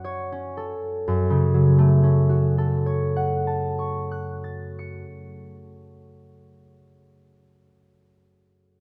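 This is a classical solo harp piece, a short fragment cut from a longer work, with a gentle, mysterious mood. It moves slowly in three-four time with a free, rubato feel. The concert harp plays alone for the full 7.1 seconds, thumb-plucked, with a warm, ringing tone that sits up front, and its notes span from F#2 to C#7. An opening idea gives way to a new passage at 1.1 seconds. The close, detailed microphones capture the instrument intimately, framed by a light reverb.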